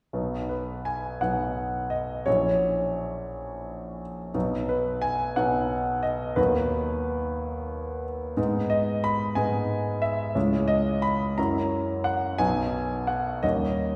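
In a 6/8 with rubato, the dotted-quarter pulse moves at roughly 53-62 BPM through this passionate yet hopeful romantic character piece for solo piano, cut from a longer work. The concert grand sounds intimate and up front, with deep bass, a natural tone and audible action noise, set in the wet reverb of a recital hall. Its harmony rests in B major before turning toward G# minor at 8.4 s, then returns to B and closes on a D#7 chord.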